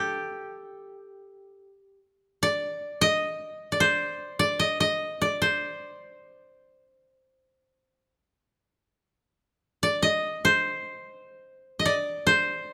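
Japanese traditional chamber music for solo koto, this short excerpt cut from a longer piece carries an austere, still mood. The pulse sits around 73 BPM in 4/4, though the playing moves freely in rubato, with the phrasing stretching and settling in the C kumoi mode. The koto, played with fingerpicks, sounds bright and woody, keeping to a compact span from G4 to Eb5. It sits up front in close, detailed microphones that catch a dry, plucked attack, with only light reverb around it. The material falls into two parts, an opening passage that gives way to a new one at 9.0 seconds before the cut at 12.7 seconds.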